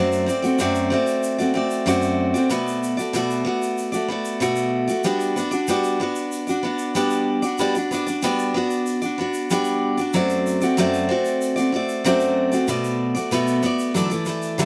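A full-bodied picked steel-string dreadnought guitar opens this heartfelt, easy-going acoustic pop excerpt in G major at 94 BPM, sitting up front with audible finger squeak as it moves through D7/F#, Bm7 and Gmaj7 before settling on Dadd9, while a grainy, bright tube shaker enters at 0.1 seconds, distant in the background within a large room, all under light reverb.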